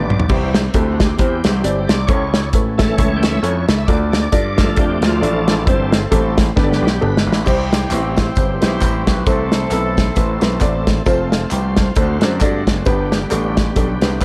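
Uplifting and jubilant, this uptempo gospel passage in C major swings at 134 BPM, cut from a longer piece. A shouting tonewheel organ with key click, slow rotary speaker, overdrive and chorus vibrato takes a solo through the first 7.5 seconds over a worn, slightly detuned upright piano, a punchy overdriven slap bass, a small-room drum kit with a tight kick and fills, and a very quiet, distant woodwind section. At 7.5 seconds, distant horns carry the melody until 10.6 seconds while tambourine, tube shaker and group handclaps join from the background, all in a dark production with light reverb.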